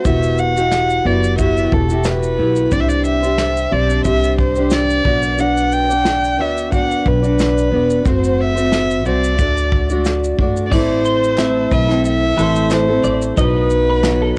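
This home cassette recording sits in a snug booth with a short ambience and is cut from a longer piece. It is acoustic pop at 90 BPM in 4/4, with a light swing on the sixteenths and tuning at A4 = 436 Hz, and it carries a reflective, tender mood. Up front, a dark, intimate violin plays the melody sul tasto with light vibrato, a soft attack and an airy bow, touched by analog delay. A double-tracked, plugged-in jumbo steel-string acoustic guitar fingerpicks a full-bodied accompaniment with audible finger squeak, supported by a woody, growly pizzicato upright bass with tube saturation and a brush kit with bright cymbals, a punchy kick, snare, crash and shaker. The chords move through Emadd9, Csus2, Bm, F#dim and D, then shift to Am and B at 10.7 seconds, where a clean, compressed electric guitar enters with picked arpeggios through an ensemble chorus. A hollow, very quiet group handclap joins at 11.4 seconds for the closing moments.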